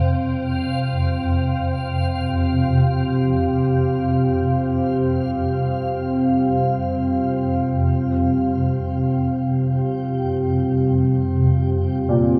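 Dark and unsettling, this ambient fragment is cut from a longer piece tuned to A4 = 439 Hz. Up front, a swarming, tense drone holds the low end and evolves throughout, its detuned, warbling sine tones carrying a bright, granular, vintage edge. Above it, a deep, moody pad sustains chords that open on Fsus2, its sawtooth and sub-octave layers treated with chorus and shimmer reverb. A dark grand piano weaves mellow arpeggios through the middle register, tinted by analog chorus. High and faint, a reversed, swelling triangle texture adds a dreamy, detuned haze, while a synth texture fades out over the opening 7.9 seconds. The whole mix is soaked in huge, wet reverb with an 8.2-second tail.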